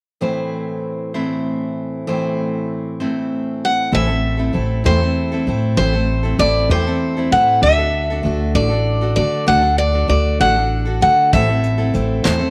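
Melancholic and wistful, this acoustic folk passage for a duo or small band moves at an unhurried 65 BPM in 6/8, set in A dorian and cut from a longer piece. A picked steel-string acoustic guitar opens alone at 0.2 seconds with a full-bodied dreadnought accompaniment sitting up front. A second picked steel-string guitar carries the melody from 3.6 seconds in a high register, its auditorium tone touched with audible finger squeak. Moments later a pizzicato upright bass joins, woody, growly and thumpy with a dark edge, as the harmony moves from Am to D and back to Am. A soft brush drum kit, with a medium-tuned snare, tight kick and hi-hat, appears only briefly near the close at 11.3 seconds. Light studio reverb gives the group a gentle sense of room.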